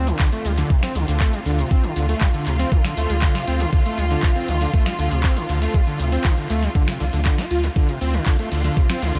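A straight 4/4 acid house pulse, driven by a thumpy, overdriven kick up front and a dry, booming analog drum machine of tonal snare, metallic hats, handclaps, finger snaps, cabasa and ride, carries this hypnotic, raw excerpt on a single D minor chord, where a squelchy, gritty acid bass riff with chorus and delay and a thick, saturated sine sub bass pump beneath distant, lush bowed string chords in light reverb.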